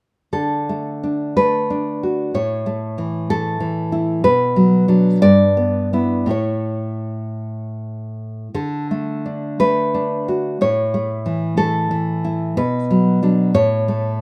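A fingerpicked nylon-string guitar begins at 0.3 s, playing alone throughout this tender, sunny excerpt from a longer romantic piece for solo classical guitar. The tone is warm, full-bodied and deep in the classical manner, with the ring of fresh strings and an audible finger squeak. It sits up front in a light reverb. In 6/8 and D major, the music moves with a rubato feel at roughly 53-64 BPM counted in dotted quarters, spanning G2 to D5. The harmony travels from D to A, Bm, Em/G and A, then returns to D and passes through A and Bm before closing on A at 13.6 s.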